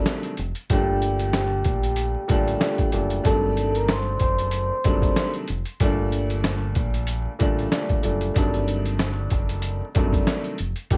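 A swung 94 BPM boom-bap groove from a gritty, pitched-down sampler kit with a thumpy kick and compressed snare sits up front in this reflective, tough hip-hop piece in G harmonic minor, where a smooth vintage grand piano with long sustain plays chords over a dark, round fingered electric bass, and a mellow, ringing soft-mallet vibraphone carries the melody from 0.7 to 5.3 seconds, the mix coated in worn, warbling cassette tape, vinyl crackle and light reverb.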